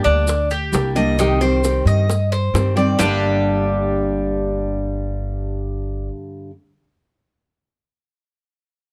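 Nostalgic and sultry, this short cut from a Cuban son and guajira piece moves at 132 BPM in G minor, shifting from Gm to Cm before returning to Gm. Up front, a picked tres with metallic double strings plays arpeggios over a fingerpicked nylon-string guitar with audible finger squeak, while a woody, thumpy pizzicato upright bass anchors the low end. Tight, high-tuned bongos played with hard hands and grainy maracas sitting in the background stop at 3.1 s, leaving the strings in a close, dry, detailed sound.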